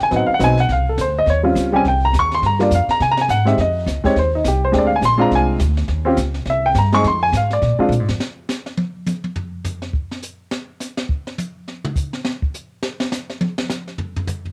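Swinging and warm, this jazz piano trio cut from a longer piece moves at a brisk 208 BPM in 4/4 with a swung eighth-note feel. A worn, intimate baby grand piano carries the melody up front, its short sustain and audible action noise giving it a natural, close presence, while its tape coloring adds a homespun softness. A woody upright bass with gut strings plays pizzicato beneath it, thumpy and forward in the mix, moving through changes such as Adim7, Eb13, Gm7 and Bb9 before landing on Fm and Bb7. Both piano and bass stop around 8.2 seconds. After a drum fill at 7.9 seconds, the brushed kit takes over alone with its high-tuned snare, punchy kick, hi-hat and toms, also carrying a cassette tint. Light reverb and the home-recorded cassette sound lend the whole take a cozy, lived-in character.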